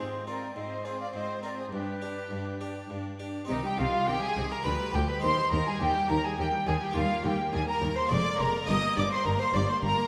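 An airy, distant silver flute and a focused chamber violin section carry the melody from the start of this dramatic, driving baroque-style concerto movement in 3/4, over a lush, up-front second violin line, a bright harpsichord in the background, and smooth viola and cello sections, with an expressive, close double bass section joining at 3.5 s, all within a wet scoring-stage reverb.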